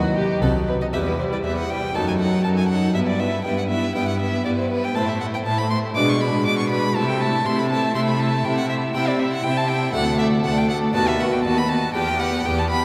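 A baroque-style concerto movement opens on a B chord with a warm, expressive solo violin up front, its portamento singing over a clear cello section, a round harpsichord and rich bowed violin and viola sections in the background, while a double bass section sounds only until 0.9 s, all at a festive, brilliant 120 BPM in 4/4 moving through E minor harmony under a wet cathedral reverb in this short cut from a longer piece.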